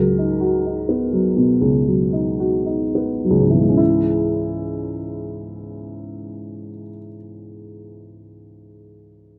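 A woody, natural-sounding upright piano plays alone, up front in a rough home-demo mix with moderate studio reverb, in an intimate, reflective neoclassical minimalist passage from a longer piece: in C# dorian, tuned to A4 = 441 Hz, in a rubato 4/4 at 51-64 BPM, it slows down over a B/C# chord in its opening 3.8 seconds before settling onto C#m for a second phase that runs to 8.1 seconds, spanning C#2 to A#4.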